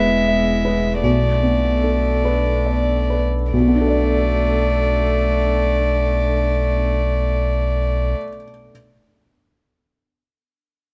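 A rich, floating violin carries the longing, reflective melody of this neoclassical piano-and-strings fragment in a rubato 6/8, joined by a clear, nasal cello second line, a felt-muted upright piano playing intimate accompaniment, a deep sub bass with octave up front, and a warbling, lo-fi tape-like pad with chorus and its own reverb sitting dark in the background, all captured with close, detailed microphones in light reverb as the music slows over its first 3.5 seconds.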